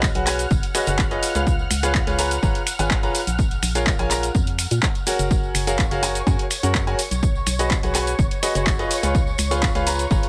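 Feel-good and uplifting, this piano house excerpt moves at 125 BPM in F# major, with a bright, brilliant grand piano riff up front, carrying dub echo and sidechain pumping over chords moving from B69 to C#7 to F#maj9. Beneath it, an organ-like FM bass with a hollow, percussive attack pumps alongside a silky, chorused analog string pad of sustained chords in the background. A punchy, tape-warm electronic kick drives the groove, joined by an analog drum machine of hi-hat, handclaps, finger snaps and cabasa, and a band-limited vintage tambourine, all in a dry sound.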